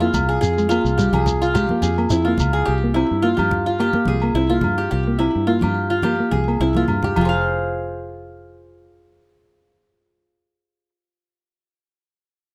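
A bright, plectrum-plucked qanun with a slapback echo sits up front, spinning arpeggios over a bittersweet yet danceable highlife guitar-band groove at 107 BPM in F harmonic minor, cut from a longer piece. A dark, clean, fingered electric guitar plays accompaniment and a round, foam-muted fingered bass anchors the Fmadd9 and C7 changes. Ringing agogo bells and hard-hand, low-tuned congas sit in the background, joined by a grainy shekere until 2.5 s. After a drum fill at 6.7 s, only the qanun and bass carry on from about 7.4 s onto an Fm chord, all in light reverb.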